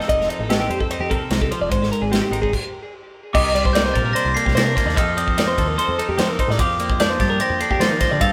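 Intricate and wistful, this short excerpt of math rock and midwest emo moves at 148 BPM in a straight 4/4, its band playing live together in a moderate stone room. Two bright, clean twelve-string electric guitars carry the harmony: one plays a compressed, twangy accompaniment while the other spins higher arpeggios trailed by tape echo, over chords that move from F7 to Abmaj7. An acoustic studio drum kit sits up front with bright crash and ride cymbals, a medium-tuned snare and a punchy kick, and a dark, round picked electric bass joins at 0.1 seconds. The band stops together from 2.5 to 3.3 seconds, and then a glockenspiel struck with soft plastic mallets enters with a ringing, bell-like melody, close-miked and dry, as the harmony turns to Cm9, back to F7 and on to Bb69/F.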